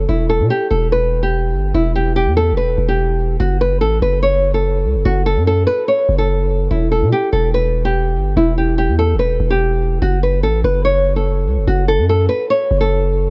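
A close, small-room sound frames this short cut from a longer hip hop piece, its top end rolled off so the whole recording sits dark and muffled. A fingerpicked nylon-string guitar carries the melody up front, its old strings giving a woody, boxy tone that a low-pass filter dulls further. Beneath it, a long sustained 808-style bass supplies deep, sine-like notes with a fast attack that then decay, sitting just as close as the guitar. The half-time feel lets the two parts breathe over a slow alternation between Em and F#m, changing every few seconds from 0.1 s onward. Both instruments play together for the full 13.3 seconds, creating an eerie, melancholic mood.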